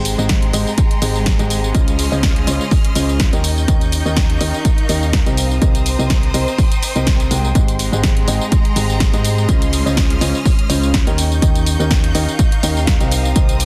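A woody upright piano riff leads this feel-good piano house excerpt in Ab major, its audible action noise giving it an intimate, present quality, with a digital delay trailing its notes. Beneath it, a round FM bass with a fast attack and mellow decay anchors the low end, while a focused violin section holds lush, bowed chords with vibrato, and a soft-attacked, expressive string section adds texture in the background. A punchy analog drum machine joins at 0.1 seconds with hi-hat, tambourine and a tape-warm snare touched by soft clipping, and the electronic kick arrives at 0.3 seconds, sitting up front with the room sound of a large space. The bass, piano and both string sections pump against the kick through sidechain compression, giving the uplifting groove its breathing motion at 124 BPM with a light swing on the sixteenths. The harmony cycles through Abmaj7, Dbmaj9, Eb7 and Cm7, all set in a digital ambience and a dense, heavily limited modern master.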